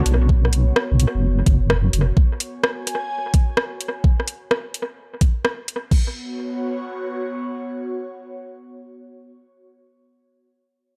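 UK garage in a two-step style, this soulful, moody fragment moves at 128 BPM with a swung 16th feel, shifting from Bsus2 to F#sus2 and back. A deep, dark wobble bass with a filter sweep and sidechain pumping sits up front until 2.1 seconds, while an overdriven, knocking electronic kick and a layered garage kit with metallic hats, crash and rim clicks, touched with analog delay, drive the groove until 6.0 seconds. Beneath them an airy, breathy pad with chorus, phaser and pumping plays from the start and carries on alone to the close, set in an echo-heavy mix with light digital reverb.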